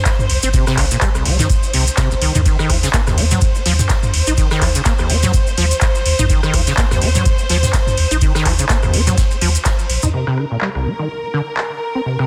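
Dense and heavily limited with a small-room ambience, this gritty, trippy acid house excerpt moves at 125 BPM in 4/4 with a 16th-note swing, set in C minor and cut from a longer piece, opening straight into a drop over a Cm chord before the harmony falls away at 2.5 seconds and a C7 with its third omitted arrives at 10.1 seconds. A squelchy, resonant sawtooth acid bass riff with tube saturation, ensemble chorus and tape echo pumps against the sidechain alongside a round sine sub bass, while a lush, bowed symphonic string section holds vibrato-rich sustained chords that pump as well. Up front sits an analog drum machine with metallic, low-pass filtered hats, handclaps, ride, rim clicks and toms, joined by a deep electronic kick that stops at 9.8 seconds, grainy maracas and a very quiet brushed kit with dark cymbals and a high-tuned snare.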